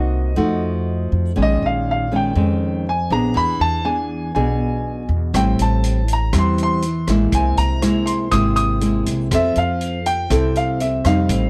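A straight 4/4 bossa nova groove at 121 BPM carries this sunny, romantic clip from a longer piece, where an open, up-front baby grand piano sings the melody high above a thumb-plucked classical nylon-string guitar and a woody, thumpy pizzicato upright bass, moving through chords from F7b9 to a closing Fmaj7, while a mid-forward vintage drum kit with a punchy kick and rolled-off top enters at 5.3 seconds on hi-hat, kick and rim click, all captured with close, detailed microphones and a touch of light reverb.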